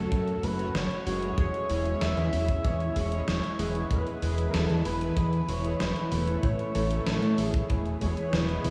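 A smooth, expressive synth lead with lush chorus and analog delay sings over a silky analog string pad pumping under sidechain, a very quiet detuned unison pluck playing arpeggios and a thick, saturated analog bass up front, while bold, brassy synth stabs trailing diffuse delay, a gated 80s drum machine's hi-hat and gated-reverb snare, and a tight acoustic kick fill out this moody, cinematic synthwave excerpt, the mix soaked in dreamy cathedral reverb.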